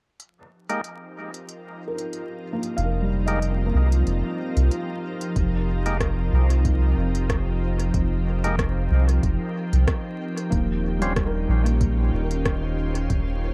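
A swung 4/4 groove of smooth hi-hats and rim clicks from an overdriven, small-room electronic kit opens this hazy, spacious ambient dub excerpt, and an electronic kick with a soft, saturated thump joins at 5.4 seconds. A calm, organ-like pad fades in alongside gritty, dub-echoed tonewheel organ stabs with key click, while a felt-muted upright piano plays intimate, mellow arpeggios through a filter sweep and analog delay, and a round, deep analog bass enters up front at 2.8 seconds. The mix is steeped in echo and vinyl crackle, and the harmony moves from F9sus4 to Eb13 at 10.5 seconds.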